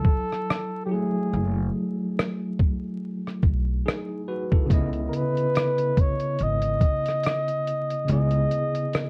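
This lo-fi hip hop fragment, cut from a longer piece, sits at a relaxed 71 BPM in 4/4 with a light swing on the sixteenths, and its reflective, melancholic mood settles in C# minor. A mellow, breathy flugelhorn carries the jazz-style solo melody throughout, close-miked with scooped notes and softened by a low-pass filter and plate reverb. Beneath it, a bell-like tine electric piano plays clean, bright chords dulled through cassette tape and a low-pass filter, moving from F#m9 to C#m9 at 4.7 seconds as the opening break gives way. A gritty, compressed sampler-style drum kit with a thumpy kick, hi-hat and rim click sits up front and tape-warm, while a woody, dark pizzicato upright bass on gut strings enters at 1.3 seconds and drops out at 8.4 seconds. The whole recording wears a worn, warbling old-tape character, with vinyl crackle, drifting pitch and a moderate studio reverb.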